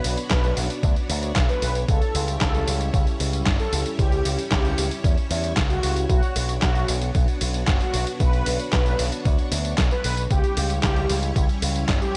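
A digital ambience wraps this bittersweet, melodramatic italo disco excerpt, cut from a longer piece, which moves at 114 BPM in a straight 4/4 in B minor. A mellow synth brass carries the melody from the start, its round, detuned sawtooth tone dark and brassy, with vibrato, a filter sweep, chorus, digital delay and shimmer reverb. Beneath it a string machine full ensemble holds lush, vintage sustained chords with a slow attack and sub octave, treated with ensemble chorus and its own shimmer reverb, as the harmony shifts between Bmadd9 and C#dim. An up-front picked electric bass, pushed through an envelope filter and tube saturation, gives a warm low end. A dusty soul sampler-style kit supplies handclaps, hi-hat, a medium-tuned snare and tambourine, gritty and compressed, in small room ambience with gated reverb. From 0.3 s a thumpy electronic kick joins, gritty and compressed in its own small room ambience.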